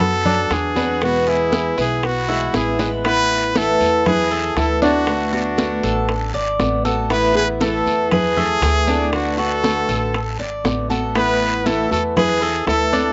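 Warm and sunny, this snippet of Cuban son and guajira moves at 118 BPM in a straight 4/4, with a bright, up-front trumpet singing the melody with vibrato and a smooth top, while a warm, fingerpicked nylon-string guitar carries a classical-style second line in the background. A boxy old ladder-braced acoustic guitar, with audible finger squeak, and a metallic, double-strung tres spinning arpeggios both carry slapback echo, above a woody, dark, thumpy pizzicato upright bass with gut strings. Ringing, hard-handed congas sit close and dry, tight bongos with slapback echo and a raspy guiro stay in the background, and after a short drum fill at 2.3 seconds the chords settle from Bm and E into an easy sway between Asus2 and D6, all captured outdoors with a dry, dull-topped sound.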